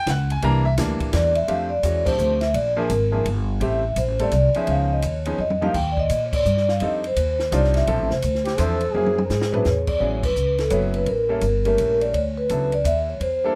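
Swinging and relaxed, this short jazz waltz at 169 BPM in 3/4 sets a soft-mallet vibraphone melody with a medium motor vibrato over clear, intimate upright piano with audible action noise, up-front woody pizzicato bass and a distant cocktail kit with dark cymbals, punchy kick and high-tuned snare, while a breathy, roomy trombone adds a brief second line from 8.4 to 10.0 seconds amid band accents, short drum fills and rich extended chords.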